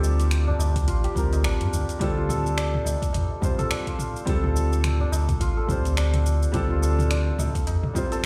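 Heard through a large studio reverb, as if played on a big sound system in a bare room, this short cut from a longer organic downtempo piece carries a hypnotic, warm mood. It moves at 106 BPM in 4/4 with a 58% swing on the sixteenths, in D minor pentatonic tuned to A4 = 439 Hz, shifting from Gm7 to Dm at 2.0 seconds. A felt-muted upright piano supplies soft, intimate accompaniment with a short sustain, coloured by vintage 12-bit sampler grit, sidechain pumping, a low-pass filter and delay. A hammered santur adds mellow, shimmering arpeggios through its own delay. Up front, a smooth gliding synth bass with a dark sawtooth and square-wave tone, fast attack and portamento pumps with sidechain. The deep house drum kit layers finger snaps, metallic hi-hats, shaker and toms with overdrive, a high-tuned, close and dry tabla sits in the background, and a deep, tape-coloured electronic kick joins at 0.8 seconds.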